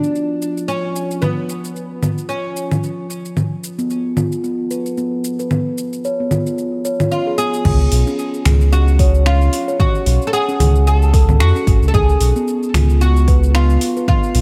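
Swung sixteenths drive this earthy, hypnotic organic downtempo excerpt, where an overdriven deep house kit of congas, shaker, finger snaps, metallic hats and crash cymbal runs throughout beneath a woody, plectrum-plucked oud melody with delay, while a soft quartz singing bowl rings in the background until 7.7 seconds, a steel tongue drum struck with soft rubber mallets adds tape-echoed arpeggios from 3.8 seconds, and at 7.7 seconds an overdriven electronic kick enters alongside a dark, round analog bass with tube saturation sitting up front, all in light reverb.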